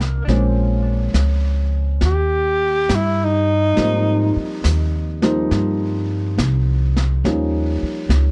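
A late-night, romantic jazz ballad excerpt at 69 BPM opens with a dark, mellow grand piano, a woody, thumpy pizzicato upright bass and a vintage kit played with brushes on snare and hi-hat, all swinging over chords moving from Bbm9 through Eb and Abmaj13 to Eb9. From 2.1 to 4.6 seconds a breathy tenor saxophone steps up front with a subtoned, jazz-style melody, scooped notes and gentle vibrato, touched by analog delay. The production is dark and lightly reverberant, with the gut-string bass up front and the brushed drums rolled off at the top.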